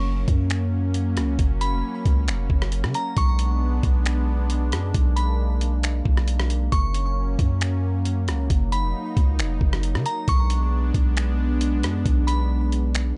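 A half-time groove in 4/4 carries this dreamy, blissful slice of atmospheric cloud-rap hip hop, with a trip hop sampler-style drum kit entering at 0.3 seconds: finger snaps, hi-hat, rim click and a thumpy kick, all compressed, pitched down and gritty, sitting up front. Beneath it, a long sustained 808-style bass holds the low end with a deep, mellow sine tone that starts fast and decays, also placed up front. A warm analog pad supplies sustained chords built from detuned sawtooth waves with ring modulation, a slow attack, and chorus, phaser and sidechain pumping giving it a smooth, breathing motion. Above, a glassy synth bell carries the melody with a crystalline FM sound, fast attack and long release, colored by chorus and digital delay. The harmony moves between F# and Bm6. The production is dark and dry with little reverb, and the piece is cut from a longer work, ending at 13.2 seconds.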